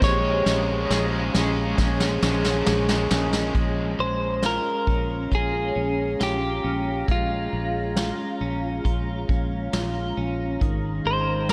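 A punchy, rolled-off vintage brush kit sits up front in this ethereal, haunting dream pop excerpt, opening with a drum fill through 3.6 seconds, while a round, foam-muted fingered bass anchors the low end. A bright, twangy clean electric guitar carries the melody through delay, slapback echo and shimmer reverb, and a second clean guitar plays compressed arpeggios with subtle chorus. A picked overdriven guitar with tremolo drops out at 4.1 seconds, and a granular, octave-up shimmering pad holds sustained chords inside a lush hall reverb with a big arena sound, moving from Bbm7 to Abmaj7 at 10.6 seconds.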